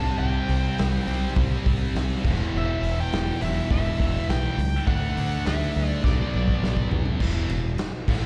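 A straight, driving 4/4 groove carries this aggressive hard rock fragment, heard as a live gig through the venue's PA with a recital-hall reverb. A growling, round fingered bass sits up front beneath two picked rhythm guitars, one scooped and bright with high-gain distortion and slapback echo, the other sludgy, dark and overdriven in the background, while a smooth overdriven lead carries the melody with slapback echo until 6.9 seconds. A raw, saturated garage drum kit enters at 0.5 seconds with a punchy kick and a gritty, rolled-off top, and rolls into a drum fill at 6.0 seconds.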